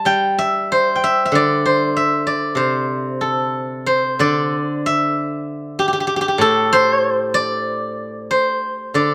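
Pastoral and elegant, this brief Chinese traditional excerpt features a solo steel-string zither, plucked with fingerpicks and sitting up front in a live room with light reverb, its mellow, silvery tone ringing across a range from A2 to C6 over a rubato 2/4 pulse of around 90-99 BPM in the C gong mode, with a new section arriving at 3.9 seconds.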